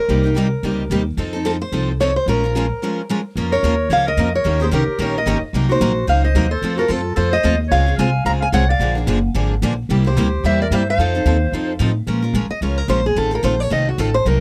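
This acoustic string swing piece in the jazz manouche style is swinging and virtuosic, taken from a longer performance. A boxy, parlour-toned picked steel-string guitar carries the melody up front, with tape echo on its lines. Two bright picked steel-string guitars play the accompaniment, one with an auditorium character and the other a concert-sized sound marked by finger squeak on fresh strings. A woody, thumpy upright bass with gut strings plays pizzicato up front and anchors the low end. A clear clarinet with vibrato and scooped notes enters at 3.5 seconds as a distant, roomy second line in jazz style, following a short break. A steel-string guitar takes a solo from 12.1 seconds to the close, all captured in a dry, close 1970s-style studio sound.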